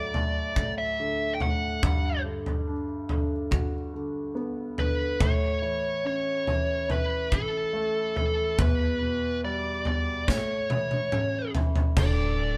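A dark, distorted electric lead guitar carries the melody of this heartfelt, hopeful pop ballad, its picked tone sitting up front between A4 and G5. It moves at a slow 71 BPM in straight 4/4, tuned to A4 = 437 Hz, over a progression of D, Gmaj7, A, Em and back to A. A concert grand piano supplies intimate accompaniment with deep bass and audible action noise, giving it a natural, close presence. An acoustic, polished drum kit sounds airy and punchy, with a medium-tuned snare, crash cymbal and toms, and it plays a fill from 10.3 to 12.0 seconds. At 12.0 seconds the chords drop out and a thick, saturated sine sub bass enters on a sustained low D1. The band plays together in a stone room with moderate reverb, and the passage is cut from a longer piece.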